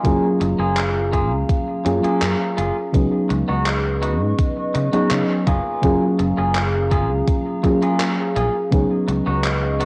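A nostalgic, faded vaporwave excerpt at 83 BPM in F# major opens with everything at once: a soft, round FM electric piano up front with subtle chorus and tape echo, a clean, twangy picked electric guitar riff, and a dark, warbling pad of detuned square and triangle tones sitting in the background with 12-bit sampler grit. Underneath, a fretless electric bass with lush chorus carries the low end, while a thumpy overdriven electronic kick and a gated 80s drum machine of handclaps and hi-hat, both re-recorded in a large room, keep a straight 4/4 pulse until the kick drops out at 8.9 seconds. The harmony drifts between F#maj9 and C#9sus4, and the whole home cassette recording carries a light digital ambience and slightly flat tuning.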